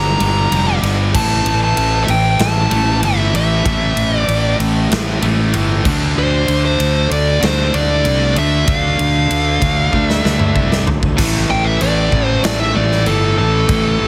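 A dark, smooth lead guitar with overdrive and slapback echo carries the melody up front over twin riffing guitars, one a hollow-bodied, overdriven semi-hollow set back in the mix and the other tight, bright and distorted, while a growly fuzz bass drives the low end in this aggressive hard rock passage at 96 BPM, moving through Gm, A5 and Dm. A big-room acoustic arena kit with a firm kick, medium-tuned snare, crashes, ride and toms joins at 0.2 seconds and throws a fill before the lead breaks into a solo at 11.2 seconds. The dry, heavily compressed sound has a radio-ready punch, and the piece is cut from a longer work.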